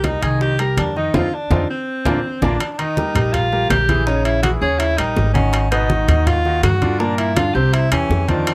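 A breathy, whispered alto saxophone carries the melody up front with light vibrato in this sultry, sophisticated slice of Afro-Cuban jazz at 164 BPM in a straight 4/4. A polished concert grand with audible action noise and long sustain plays chords such as Cm7, Ebadd9 and Abm7, while a woody, thumpy pizzicato upright bass sits forward. Low-tuned congas, very quiet bongos and ringing metal-shell timbales fill out the percussion, the band hits an accent from 1.1 s, a drum fill leads into a new section at 2.6 s, and the close, dry miking keeps the detail intimate.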